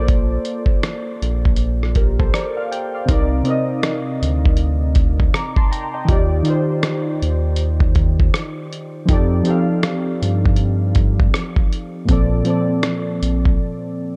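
Warbly, detuned lo-fi synth keys with chorus and a low-pass filter open this cosy, mellow lo-fi hip hop excerpt in Bb major at 80 BPM over a round, deep analog bass, joined at 0.1 s by a gritty, compressed sampler-style drum kit with a thumpy kick, hi-hat and rim click, swinging through Bbmaj7, Cm9, Ebmaj9, F13 and Bbmaj9 in a dark production with digital ambience until bass and drums stop at 13.6 s, leaving the nostalgic keys alone to 14.2 s.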